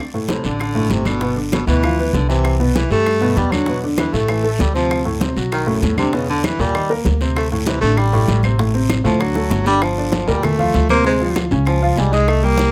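Piano with a short sustain opens this driving, sophisticated Afro-Cuban jazz excerpt at 195 BPM in 4/4 with a straight feel, joined at once by round, low-tuned bongos and bright, thin-skinned congas. From 0.3 s a warm baritone saxophone takes an up-front jazz solo with vibrato and subtone, over a thumpy pizzicato upright bass, a raspy guiro and woody claves in the background. A drum fill at 9.4 s leads into a fresh pass through the changes, heard through close, detailed microphones and light reverb.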